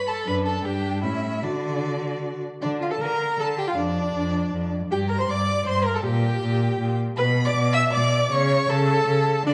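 An up-front cello anchors this quick, cheerful classical-period movement for string quartet at 158 BPM in 3/4, its rich, vibrato-laden bass joining at 0.3 seconds alongside a viola accompaniment with a clear, intense edge. Above them, a distant, focused first violin carries the graceful melody while a second violin with full-bodied tone traces a supporting line from the start, all four parts bowed by single players. The dark production sets the quartet in a reverberant recital hall, and this passage, cut from a longer piece, moves into a new section at 2.6 seconds.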